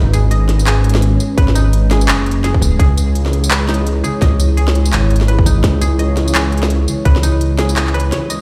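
Dark and cinematic, this half-time drum and bass excerpt has a swung, half-time feel as it moves from G#m to C#m. A moody, full-bodied analog pad holds sustained chords with a slow attack, long release and chorus, pumping against the sidechain. Over it, a mellow koto played with fingerpicks spins woody arpeggios trailed by tape echo. Underneath, a detuned sawtooth bass sits up front, deep, rumbling and saturated, until it drops out for a break at 8.1 seconds. The organic electronic kit supplies a woody snare, crisp hats, handclaps and tambourine re-recorded in a large room, while a tight, layered electronic kick punches in from 1.4 seconds. The whole track sounds as if played on a big sound system in a bare room, washed in large studio reverb.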